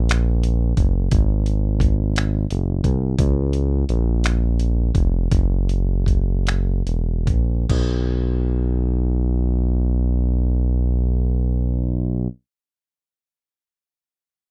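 A slow, straight six-eight sway carries this sensual, intimate R&B fragment, with a gritty, compressed, sampler-style soul drum kit of thumpy kick, hi-hat, finger snaps and crash cymbal sitting up front beside a smooth sawtooth-and-triangle synth bass with a fast attack and sustained low notes; the pulse slows from 3.2 to 7.7 seconds, the drums drop out at 7.9 seconds, just after the new section begins, and the bass carries on alone until 12.3 seconds, in a dry, rough home-demo mix.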